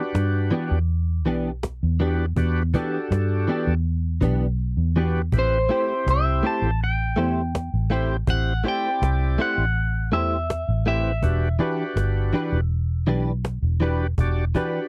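A slightly broken-up, twangy electric guitar melody with phaser opens at 0.0 seconds over a gritty, overdriven tonewheel organ turning through a slow rotary speaker, soon joined by a dark, round, foam-muted fingered bass, a snappy, up-front cajon whose kick and snare drop out from 4.6 to 5.3 seconds, and bright, compressed clean guitar stabs with ensemble chorus, all part of a brooding, mournful straight-eighth soul blues fragment at 81 BPM in E minor that moves from Em7 to Am7 and back, captured in a dry, close 1970s-style studio sound.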